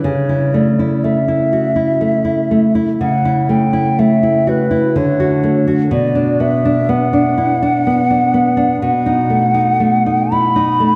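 In a rubato 3/4 at 62 BPM, this tender, lyrical excerpt from a romantic duo sets a mellow, hollow silver concert flute, pure-toned with vibrato and tongued notes, over a full-bodied, fingerpicked nylon-string guitar that sits up front throughout its 11 seconds. The guitar moves from A/C# to D at 5.0 seconds, then to Bm and finally B7, while the flute sings above. A wet church reverb with a 3.0-second decay surrounds the pair in a resonant hall, tuned to A4 = 438 Hz.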